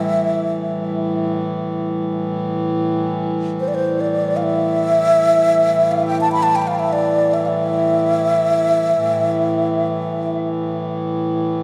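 Bathed in a dark, wet concert-hall reverb, this haunting, meditative world piece drifts in free time: a breathy, mellow, close-miked alto flute with vibrato and tape echo sings expressively up front over the reedy, breathing drone of a hand-pumped harmonium, while a pure, ringing quartz singing bowl sounds faintly in the background until 3.2 seconds, and the flute falls away at 10.4 seconds, leaving the harmonium to close this fragment of a longer work.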